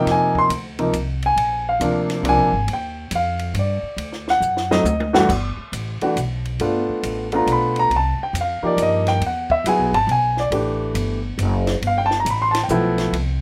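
Sophisticated and playful, this short excerpt of small-group jazz swings in 3/4 at 138 BPM, with an intimate grand piano comping up front, its action noise audible, over a woody pizzicato upright bass and a dry cocktail drum kit with dark cymbals, a high-tuned snare and a tight kick, whose fill at 4.4 seconds leads into G major at 5.3 seconds, all set in a moderate studio ambience.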